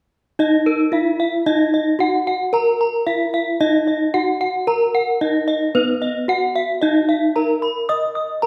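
Two bronze gamelan metallophones ring out together from 0.4 s in this brilliant, hypnotic fragment of a longer gamelan piece in Eb pelog at 112 BPM in a straight 4/4: an up-front wooden-mallet instrument carries the melody while a brighter, airier horn-mallet one spins arpeggios above it, both shimmering with the beating of paired tuning inside the wet bloom of a recital hall.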